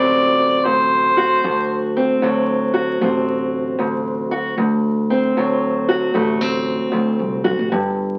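A mellow, up-front harmonica with light vibrato, tongue slaps and scooped notes opens this gritty, rollicking fragment of swung acoustic country blues over a D7 chord, alongside a boxy, fingerpicked parlour guitar and a woody pizzicato upright bass; the harmonica falls silent at 1.9 s while guitar and bass carry on to 8.2 s, all heard through moderate studio reverb and the crackle of a very old 78 rpm record.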